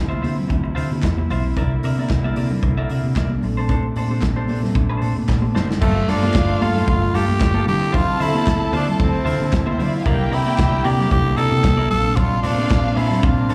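Disco in D minor at 113 BPM, glamorous and danceable, this cut opens on dark, floating bowed strings holding chords over a round, foam-muted electric bass, a bright, clean semi-hollow guitar, ringing high-tuned congas in the background, a punchy modern drum kit with crash, hi-hat, kick and snare, and very quiet, crisp group handclaps from 1.0 seconds. After a drum fill, at 5.8 seconds a raspy, gritty tenor saxophone takes the melody up front while a lush, distant second string section adds a line with slapback echo. The chords move through Dm9, C9, Bbmaj9 and Gm9 in a small, lightly reverberant room.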